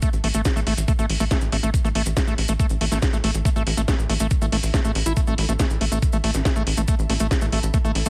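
A dry, heavily compressed radio-style sound frames this alien, psychedelic trance excerpt at 140 BPM over an A5 chord, where a knocking electronic kick and a tight, dark, punchy sequencer bass on A1 sit up front, a squelchy, gritty acid bass riff with distortion, sidechain pumping and digital delay moves between A3 and E4, a techno kit adds a cracking snare and metallic hats alongside grainy acoustic maracas, and a very quiet, ethereal pad with chorus and phaser hovers from 0.2 seconds.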